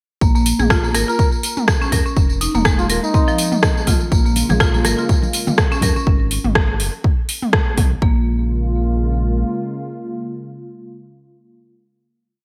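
Bright, 1980s-style digital production with light reverb and studio ambience frames this spiritual, hypnotic afro house piece, built on a woody hard-mallet marimba sequence and a round, deep analog bass riff that pump against a punchy four-on-the-floor electronic kick. A house kit adds metallic hats, rim clicks and low toms through gated reverb, while jingly tambourine and soft-handed background congas fill out the swung groove, and a veiled, bucket-muted trumpet plays short jazz phrases with light vibrato from 1.1 seconds. A smooth, detuned analog pad with chorus enters at 4.1 seconds and outlasts the bass, holding the final chord until 11.7 seconds.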